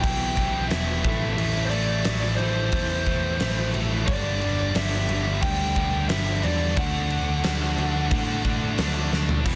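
A huge arena drum kit sits up front in this driving, heavy hard rock excerpt, its punchy kick, fat snare and bright cymbals ringing with a pumping hall sound, and a drum fill arrives at 9.1 seconds near the close. A growly, amped electric bass plays beneath it, while three picked rhythm guitars play the riff from the background: a bright cranked stack with overdrive, a tight distorted part, and a scooped, high-gain, double-tracked one. Over them, a dark lead guitar through a small cranked amp carries the melody with overdrive and digital delay until 8.7 seconds. Very quiet in the mix, an overdriven tonewheel organ holds thick, gritty sustained chords through a slow rotary speaker with chorus vibrato. The harmony moves from Em to Am, G5 and D, and the sound is dry and dense, with a heavily limited modern master.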